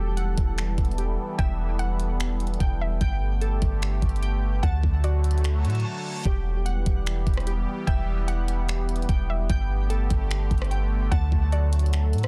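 A half-time 4/4 groove from a smooth, electronic R&B kit arrives at 0.2 s, with a knocking kick, finger snaps, hat, rim click and a softly clipped snare sitting up front beside a deep, round 808-style bass in this ethereal, melancholic cloud-rap hip hop cut. Above them, a nasal, detuned sawtooth pad holds sustained chords with chorus, while glassy digital keys ripple in arpeggios through chorus and digital delay, and from 1.4 s a gentle, dark pluck carries a high melody through the same chorus and delay. A reverse cymbal at 5.6 s leads into a short break before the chord cycle repeats, all in a dry, dense, heavily limited modern mix.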